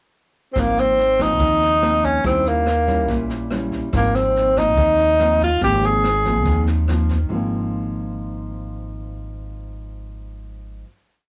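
A home cassette recording in a moderate studio ambience carries this short, romantic and relaxed bossa nova at 142 BPM in Ab major, where a breathy, subtoned tenor saxophone sings a motif-based melody up front from 0.5 s to 6.7 s over thumb-plucked nylon-string guitar chords, a woody pizzicato upright bass playing root and fifth in two, and a brushed drum kit with a boomy kick and rim clicks, before guitar and bass sustain the final chord from 7.3 s.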